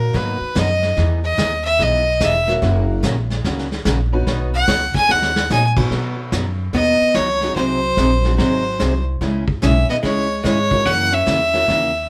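A swung eighth-note groove in four drives this cheerful western swing cut, with a vintage brush kit giving a muffled, gritty pulse of punchy kick, brushed snare and dark cymbals under a woody, growly pizzicato upright bass. Up front, a rich, nasal fiddle with light vibrato and an airy bow carries the melody, taking a solo through the opening 5.9 seconds before a short drum fill leads into the second section. Behind it, a jangly, metallic tack piano with short sustain and a bright, full-bodied picked dreadnought acoustic guitar fill out the accompaniment. At 6.7 seconds a clean, compressed hollow-body electric guitar adds a dark second line. The whole band sounds as if playing live together in one room, with moderate reverb and a lo-fi, rolled-off drum sound lending the piece a vintage flavor.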